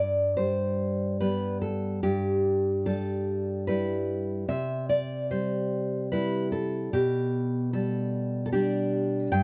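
A lone nylon-string guitar opens this brief romantic excerpt for solo classical guitar, fingerpicked and placed up front. The mood is melancholic and wistful, carried in a flexible three-beat lilt that breathes with rubato. Fresh strings give the instrument a full-bodied, deep classical tone that reaches from its low register up into its upper notes. Harmony moves gently from G through Em/G and C to G/B, the passage ending at 9.4 seconds as it is cut from a longer piece. A touch of light reverb and a dark, warm production wrap the guitar in an intimate, reflective space.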